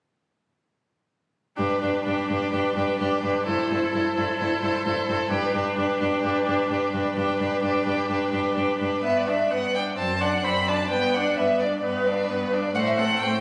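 Caught on a phone in a recital hall with moderate reverb and compression, this graceful, lively fragment of a quick classical-period string quartet movement in G major at 129 BPM, tuned to A4 = 444 Hz and taken with rubato, sets a close, expressive first violin singing the melody with vibrato and portamento over a focused second violin line, a rich viola accompaniment and a distant cello bass, the four bowed instruments playing together from 1.6 s to 13.4 s.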